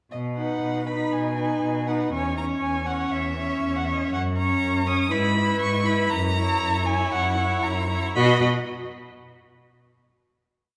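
Lively and spirited, this quick classical-period movement for string quartet moves at 120 BPM in a straight 4/4 in B major, tuned slightly low to A4 = 437 Hz, and runs as a complete short piece from a B chord through C#m/E, F# and F#7 to a closing B5 chord at 8.2 seconds. Up front, a rich, expressive first violin carries the melody with vibrato and portamento, while the warm cello plays bass on the beats and sustained bass notes. Entering at 0.4 seconds, the second violin and viola, each with a soft attack, fill in with syncopated and sustained chords. All four sound distant within a wet scoring-stage reverb that trails for about 2.2 seconds.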